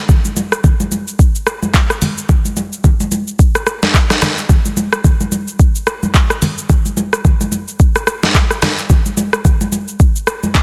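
At 0.1 seconds a smooth, electronic R&B drum kit and a set of congas begin together, setting a hypnotic, late-night amapiano groove at 109 BPM in 4/4 with a 58% swing on the sixteenths. The produced kit sits up front, built from a soft kick, a deep snare, dark hi-hats, handclaps, rim clicks and shaker. Underneath it, the acoustic congas carry a thick-skinned, medium-tuned tone struck with hard hands, placed in a small room and mixed lower than the kit. Digital ambience surrounds the parts, and the dense, heavily limited modern master keeps the sound loud. This cut from a longer piece runs as a single section until the drums stop at 10.6 seconds.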